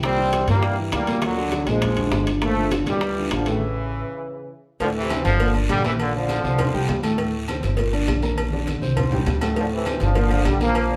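Salsa with a driving, fiery feel, this excerpt cut from a longer piece puts a brilliant, tight trombone section up front on the melody with light vibrato, over a dark, mellow upright piano with long sustain, a woody, thumpy pizzicato upright bass on gut strings, distant low-tuned congas, raspy guiro, ringing metal-shell timbales and agogo bells, and very quiet high-tuned bongos and cowbell, all in a stone room with the band playing live, with a stop at 3.6 seconds, a drum fill at 8.4 seconds and the trombones returning at 9.6 seconds.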